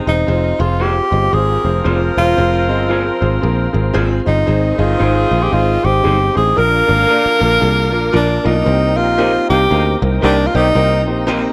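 A breathy tenor saxophone carries the melody up front, its soft attack, scooped notes and light vibrato trailing a tape echo in a jazz style. This is a danceable soul groove at 114 BPM in 4/4 with swung eighths, cut from a longer piece and opening on a band accent at 0.0 seconds. Behind the lead, a distant, tight saxophone section plays a clear second line, while a woody upright piano supplies natural-sounding accompaniment and a picked electric bass sits close, round, dark and foam-muted. A slightly broken-up electric guitar through a small old amp adds picked stabs from 0.8 seconds, coated in lush chorus and set in the background, and a very quiet tonewheel organ holds smooth, clean sustained chords with key click and chorus vibrato. The harmony moves from Fm through Ab and Bb before settling on Cm7 at 8.7 seconds, the band framed by light reverb and a small room ambience that keeps the mood warm.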